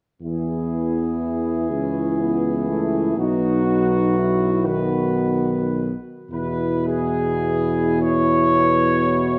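Heard through a moderate concert-hall reverb, this serene, lyrical classical excerpt for brass band moves in an unhurried, rubato 6/8 hymn style, with a mellow, up-front trumpet section carrying the melody over a French horn section's light-vibrato second line, a clear trombone section and a soft-attack solo trombone as background accompaniment, and a warm, present tuba anchoring the bass, all sounding together from 0.2 to 9.4 seconds.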